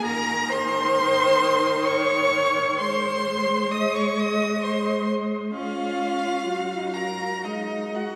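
Bathed in a wet cathedral reverb with a long 4.3-second decay, this brief passage from a longer slow romantic movement for string quartet unfolds in a lyrical 3/4 at 65 BPM with supple rubato, tuned to A4 = 445 Hz. A rich, distant first violin carries the melody from the background with smooth, even vibrato, while a clear second violin sings a second line and a close viola supplies warm, expressive accompaniment with vibrato and portamento. Up front, a bowed cello holds the bass with expressive vibrato and portamento as the harmony moves from Eb through Ab and Db to a rootless Ebm/Gb.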